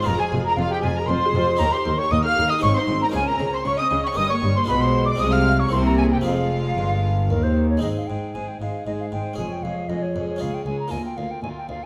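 A baroque-style classical concerto movement in 3/4, cut from a longer piece, dramatic and driving, with a hollow, pure-toned concert flute carrying the melody with vibrato alongside a violin section on the same line. A second violin section adds its own line while dark, distant violas and a close-miked, dry, round harpsichord fill in the accompaniment, and nasal cellos with reedy double basses anchor the bass in period-style gut-string tone. Moderate recital-hall reverb surrounds the ensemble, and at 7.8 s the music moves into a new section.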